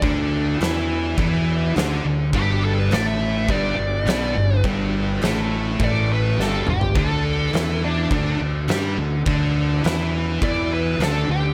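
Stoner and doom metal at 104 BPM, heavy and brooding, built on a riff shared by two thick fuzz guitars and a bright, scooped, double-tracked high-gain guitar sitting in the background, over a round, overdriven fingered bass and an oversized low-tuned drum kit up front with a boomy kick, fat snare, dark cymbals and a gritty, pumping big-room sound. At 2.4 seconds a dark, compressed fuzz lead guitar enters with a wah-inflected, delayed melody. The harmony moves from Dsus2 to G5 and then D5 after a drum fill at 6.4 seconds, and the dry mix carries little reverb in this excerpt from a longer piece.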